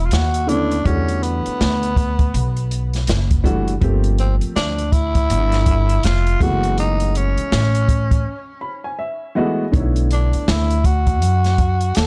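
A swung 81 BPM groove in 4/4 sets this nocturnal, cool jazz-hop excerpt in B minor, where a woody, thumpy pizzicato upright bass and an open jazz kit with a boomy kick and 12-bit sampler grit carry Bm11 to Em11, Gm11 and F#m11 changes under a dark, mellow upright piano that enters at 0.5 seconds and takes a fill during the break at 8.3 seconds, while a breathy, raspy, growling tenor saxophone with scooped notes and tape echo sings the melody, all in a dry, gritty small-room recording with cassette character.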